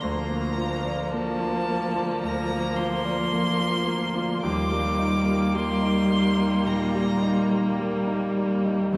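Tender and warm, this slow, rubato passage for piano quartet comes from a longer romantic movement. A clear, focused violin carries the melody with vibrato from a distance, while a smooth, even cello plays a second line and a rich, close viola holds Bb3 beneath, with the concert grand adding deep bass and long sustain up front. Bathed in a vast cathedral reverb within a dark production, the harmony moves from Bb/D to Ebmaj7 at 4.4 s.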